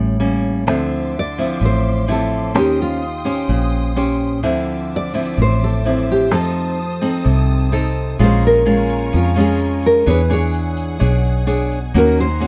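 An intimate, smooth bossa nova in D minor at 128 BPM opens with a bright, up-front fingerpicked nylon-string guitar melody over a deep, full-bodied second nylon-string guitar and a round, foam-muted fingered electric bass, joined at 0.7 seconds by a lush, close bowed string section sustaining chords with vibrato. At 8.2 seconds the harmony moves into B-flat minor and a grainy, mellow tube shaker enters, all set in a dark production with light reverb in this excerpt cut from a longer piece.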